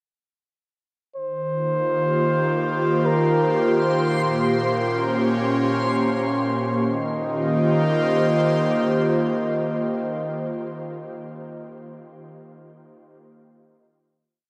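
Bathed in a huge, wet reverb, this serene, luminous ambient piece in a slow 3/4 sets a mellow flugelhorn's free, classical-style solo melody with diffuse ambient delay over an airy, breathy, chorused pad holding slowly shifting chords up front from 1.2 seconds, while a reversed, granular texture fades in behind on a single high note from 3.8 to 6.9 seconds before everything settles onto a final Eb69 chord.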